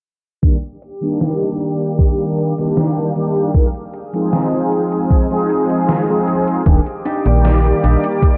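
A melancholic, hazy vaporwave excerpt built on Ebmaj7 and Fm7, where a brassy, detuned synth brass with ring modulation, chorus, cassette tape and analog delay sits up front over a thick, vintage sawtooth pad drifting in the background. A thumpy, overdriven electronic kick and a gated 80s drum machine with a gated-reverb snare and hi-hat carry the beat from 0.4 seconds, joined at 6.7 seconds by a snappy FM bass with a metallic attack and at 7.1 seconds by a dark, clean, fingered electric guitar riff with lush chorus and analog delay. A filter sweep runs throughout, and the whole track sounds like worn, warbling old cassette tape, with pitch drift, a low-pass filter and light reverb.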